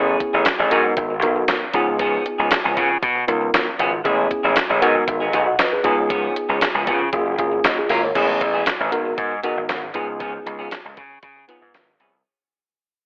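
A straight 4/4 groove at 117 BPM drives this funky, danceable early-eighties boogie funk clip, tuned to A4 = 437 Hz, built on a clean 12-bit drum machine with thumpy kick, fat snare, handclaps, hi-hat and crash in gated reverb, an up-front gritty slap bass that is bright, overdriven and punchy, a worn, slightly out-of-tune tine electric piano comping over Amaj7, G#m7 and C#7 changes before a fill at 7.4 seconds, and a clean, picked semi-hollow guitar riff with subtle chorus, the mix carrying a telephone-like filter and light reverb as it fades out from 8.2 seconds.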